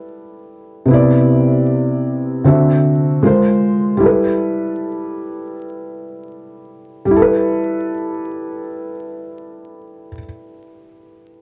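Dark, crackling vinyl and a small-room ambience frame this nostalgic, dreamy hip hop fragment cut from a longer piece at 77 BPM with a swung sixteenth feel in G major, where a solo felt-muted upright piano sits up front, mellow and intimate with audible action noise and a cassette-tape, low-pass haze, moving through rich chords such as Cmaj9, D9 and Ab69 before settling back on G69.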